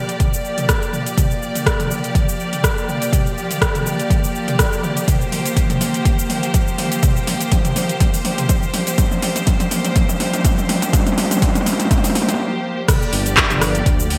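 Rich, smooth bowed strings hold a sustained G minor seventh chord, pumping against the beat, as a deep, tape-warm electronic kick and an overdriven deep house kit of metallic hats, handclaps, rim click, shaker, toms and crash build through a long drum fill with gated reverb in this driving, earthy afro house excerpt, passing through a brief break before a dark, detuned saw bass rumbles in at 13.1 s for the drop, all set in a lush hall reverb with bright 1980s-style digital sheen.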